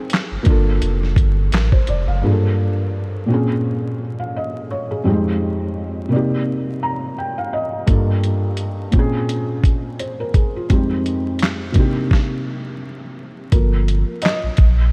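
Swung sixteenths in 4/4 drive this nostalgic, hazy lo-fi hip hop fragment: a soft, muted felt upright piano with audible action noise and a cassette-dulled tone carries the chords throughout, while a gritty, compressed sampler-style drum kit of thumpy kick, snare, hi-hat and handclaps drops out after 2.1 s and returns at 7.9 s following a piano fill, and a round sine sub bass frames the opening and the closing stretch from 13.5 s, beneath vinyl crackle and light reverb.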